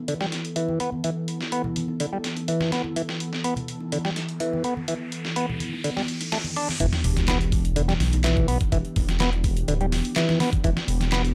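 Breakbeat with an energetic, raw edge, this gritty cut opens on an up-front, fat, lightly overdriven percussive tonewheel organ riff under a filter sweep, a swirling phased analog pad with sidechain pumping, thumpy dusty soul sampler-style drums and bright congas and bongos in the background, before a riser from 4.8 seconds leads to a sub drop and impact at 6.8 seconds, where a deep, rumbling detuned saw bass and a layered garage drum kit with metallic hats and handclaps join in.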